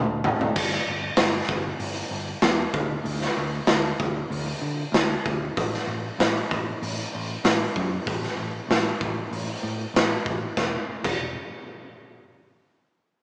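Heard through a cassette-tape haze with a small-speaker sound, this excerpt captures a garage rock band playing live in one room with light reverb. The mood is swaggering and raw, moving at 96 BPM in a straight 4/4. A drum fill kicks things off in the opening 0.6 seconds. The raw garage drum kit sits up front, saturated and gritty in a bright stone room that pumps, with a punchy kick, a medium-tuned snare, hi-hat, crash cymbal and toms, all carrying a rolled-off top. The picked electric bass runs from the very start to 11.3 seconds, amped and pushed through overdrive with a warm tone, spanning E1 to D3 beneath the kit. At 10.6 seconds the music moves into a new section before the excerpt is cut off.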